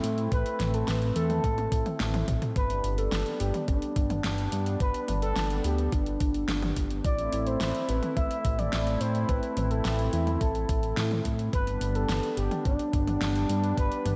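A thumpy, sampler-style electronic kick arrives at 0.3 seconds beneath a smooth, expressive synth lead, a soft-attack analog pad, a fat analog bass and a layered pop drum kit, all opening this cinematic, driving synthwave excerpt in A minor at 107 BPM. The lead carries the melody between D4 and E5 with a dark, sawtooth-and-triangle tone, vibrato, chorus, tape coloring and delay, while the pad holds sustained chords in a warbling, vintage, wave-folded voice that pumps against the kick. Up front, the thick, detuned bass pumps as well, its mellow sawtooth and square tone shaped by a moving notch. The drum kit adds a fat snare, metallic hats and toms, with a fill from 1.4 to 2.6 seconds, and the harmony moves between Am and G. A lush hall reverb soaks the mix in a dreamy haze, and the kick drops out at 13.9 seconds, just before the close.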